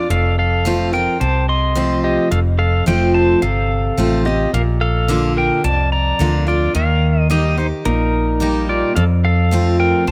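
Honky-tonk and classic country with a sunny, heartfelt mood: a clean, fingerpicked pedal steel guitar carries the melody with slide and volume swells through analog delay, a bright, full-bodied jumbo acoustic guitar picks the accompaniment, and a dark, round, punchy foam-muted electric bass enters at 0.1 seconds, all three up front under light reverb and close, detailed microphones as the chords move from F to Bb to Eb and back to F in this brief cut from a longer piece.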